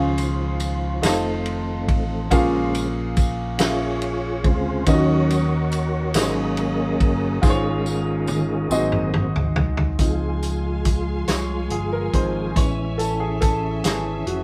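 Reverent and hopeful, this slow 6/8 gospel passage at 47 BPM in Db major opens with a smooth tonewheel organ solo through a slow rotary speaker with chorus vibrato and audible key click, backed by a vintage up-front grand piano, round amped fingered electric bass, a dry, mid-forward soul drum kit with a tight kick that plays a fill from 7.4 s, and a jingly, saturated tambourine, until at 10.0 s the piano takes the solo and a lush bowed string section enters high above, the band captured live in one room with a wet studio reverb.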